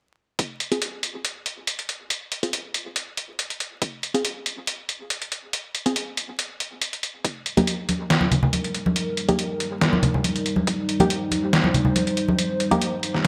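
Overdriven, pitched-down sampler-style drums with a muffled snare and hi-hat sit up front in this meditative, heavy half-time deep dubstep excerpt, joined by a muted sawtooth chord stab carrying chorus, dub echo and a filter sweep, sparse punchy electronic kick hits, ringing close congas from 7.6 seconds, and a dark, detuned analog pad with a slow attack arriving at 8.5 seconds, set within a bright 1980s-style digital mix with plate reverb and vinyl crackle.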